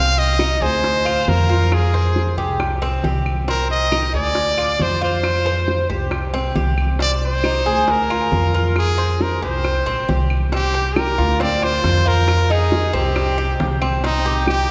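A brilliant, up-front trumpet carries the melody in this danceable Cuban son and guajira excerpt, singing with vibrato and scooped notes in a pop-style solo voice. Beneath it, a mellow Cuban tres picks arpeggios on its metallic double strings, some doubled at the octave, while a dark, thumpy upright bass played pizzicato on gut strings sits up front with a woody tone. Round, low-tuned bongos struck with soft hands come in at 0.2 seconds, and very quiet claves join at 0.4 seconds. The groove moves at 136 BPM in a straight 4/4 in C minor, cycling through chords such as Cm, Dm7b5 and Fm before shifting into a new section at 10.5 seconds. A generous church reverb with a long tail surrounds the band, giving the warm performance the sense of a large hall, and the clip is cut from a longer piece.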